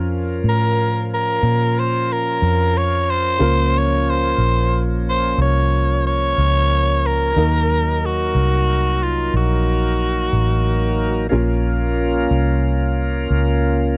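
A soulful, brooding slow blues in 12/8, where a raspy, growling tenor saxophone carries the melody up front from 0.5 to 11.3 seconds over a round, foam-muted vintage electric bass, a reedy tonewheel organ holding sustained chords through a slow rotary speaker with light overdrive, and a worn, slightly detuned upright piano tucked in the background, all captured in a dry, close 1970s-style studio sound as the chords move from Bbm to Ebm and back.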